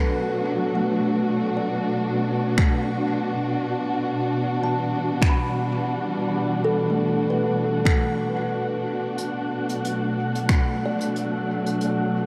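An overdriven, deep electronic kick sits up front from 2.6 to 10.6 seconds in this spacious ambient dub excerpt at 91 BPM in B minor, alongside a distant, roomy brush kit with finger snaps and hi-hat under dub echo, while veiled, con sordino strings hold dark sustained chords moving from Bm7 to Em9 and back, a woody, hollow kalimba rings out arpeggios through vintage tape echo, and an airy, breathy wind-like tuned noise layer hovers in the background, all set in a huge, wet reverb.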